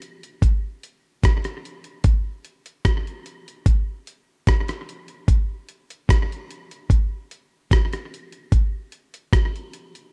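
A gritty, compressed drum kit with a thumpy kick, hi-hat and rim clicks sits up front in this short, uplifting reggae cut, a straight 4/4 groove heard alone across the dry, close 1970s-style studio sound.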